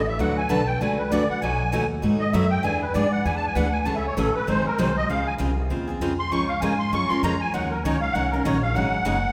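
A reedy musette accordion and a woody, thumpy upright bass open this short cut from a longer piece of acoustic string swing in the jazz manouche style. A bright, full-bodied steel-string guitar comes in at 0.2 seconds to play the accompaniment. The feel is swinging and playful at 196 BPM in 4/4, with a light swing on the eighth notes. The accordion carries a solo across the whole passage. Its shimmering musette tuning sits up front alongside the plucked gut-string bass and the freshly strung dreadnought guitar. The harmony moves through seventh chords before settling into D-flat major from 5.1 seconds, and a wet concert hall reverb gives the trio a spacious setting.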